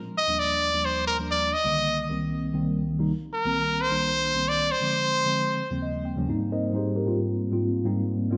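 A brilliant, punchy trumpet leads this slick, funky jazz fragment in 7/8, playing a forceful solo melody up front with light vibrato and scooped notes until 5.8 seconds. A mellow, clean tine electric piano with phaser, heard through its built-in speakers, accompanies over lush extended chords, adds a fill at 5.6 seconds and carries on alone into the closing section until 8.4 seconds. A lush hall reverb and bright 1980s-style digital production give the cut a polished sheen.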